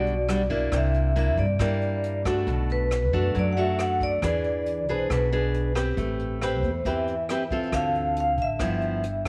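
A straight 4/4 bossa nova pulse at 137 BPM carries this melancholic, smooth fragment in E minor, where a brushed jazz kit with a punchy kick, hi-hat and rim click sits quietly beneath woody, thumpy pizzicato upright bass, an up-front, full-bodied fingerpicked nylon-string guitar with audible finger squeak, and a metallic, ringing vibraphone melody with fast motor vibrato, set in light reverb as the chords move from Em9 through C9 and Bm7 to Am9 and G6.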